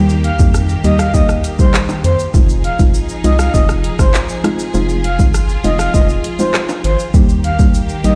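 A soft, round pluck with chorus opens this bouncy, sultry dancehall excerpt in F minor, pumping with sidechain alongside sustained, intimate bowed strings and a deep, dark analog bass. At 0.1 seconds an up-front, electronic afro-pop kit enters with a deep kick, metallic hi-hats, handclaps, rim clicks and shaker, while a ringing tube shaker and timbales sit faintly in the background. A breathy, flute-like synth lead arrives at 0.2 seconds, singing high with vibrato, chorus and digital delay. The harmony moves from Eb to Fm7 and back to Eb at a steady 100 BPM in a straight 4/4 feel. The dry mix sounds as if played on a big sound system in a bare stone room.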